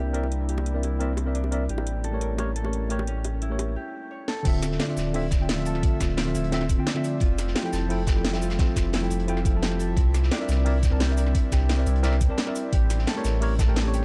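Rolling and melancholic, this liquid drum and bass excerpt moves at 174 BPM in D minor, cut from a longer piece. A worn, slightly out-of-tune tine electric piano with delay carries the accompaniment beside ringing, fingerpicked Celtic harp arpeggios, also touched with delay, while an airy, breathy pad with chorus and sidechain pumping holds sustained chords in the background. A deep, round sine sub bass sits up front throughout, and the opening drum kit brings a cracking snare, metallic hats, shaker and crash, joined briefly by tight, high-tuned bongos that stop at 3.7 seconds. After a short break and a drum fill, the drop lands at 4.5 seconds, adding a knocking, layered electronic kick and a gritty, saturated breakbeat kit with a medium-tuned snare, rolled-off top and high-pass filtering. The harmony moves through rich extended chords such as C9, A7b9, Dm9 and Fmaj9, all set in a small room reverb with a dark, warm production.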